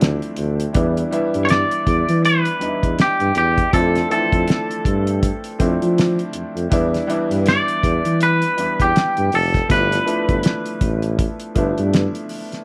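Light studio reverb gives this short excerpt of lush, warm 1970s-style soul a gentle sheen. Set in 4/4 with swung sixteenths, it moves through Dm9, Em7, Dm9/F and Em7 again before landing on G13. Up front, a cloth-damped drum kit sounds dry, dark and thuddy, with a fat snare, a tight kick and hi-hat under a rolled-off top. A tuba carries the bass in a smooth, pop-styled voice touched with vibrato, while a baby grand piano supports the harmony with an open, long-sustaining tone. At 1.4 s a clean, twangy electric guitar takes the melody, fingered and compressed, and stays out front until 11.9 s.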